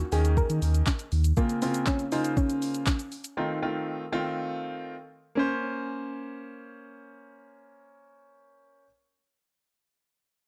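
A soft, round, wave-folded pluck carries the melody through chorus and digital delay in this driving, bittersweet dance-pop excerpt in Bb minor at 120 BPM. A clear concert grand piano accompanies it with sidechain pumping, while a deep sub bass with octave, also pumping, sounds only until 1.3 seconds. A smooth, tape-warm electronic R&B kit of soft kick, sharp snare, hi-hat, handclaps and shaker drops out at 3.4 seconds, all within a dark production with light reverb, moving from Eb7(no3) through Bbmadd9 and F7 back to Bbmadd9.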